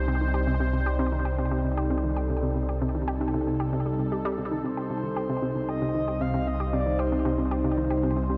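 A resonant, detuned pad sustains a single minor chord through a phaser and chorus, sitting up front over a deep, round analog bass, while a nasal, fast-attack analog pluck riff with chorus and delay begins a moment later to set a hypnotic, mysterious pulse. At 4.6 seconds a breathy, flute-like synth lead floats in high above with tremolo, vibrato and echoes, then drops out at 7.5 seconds. This dark, warm fragment of ambient sequencer-driven space music is steeped in a huge, wet reverb that makes it feel vast.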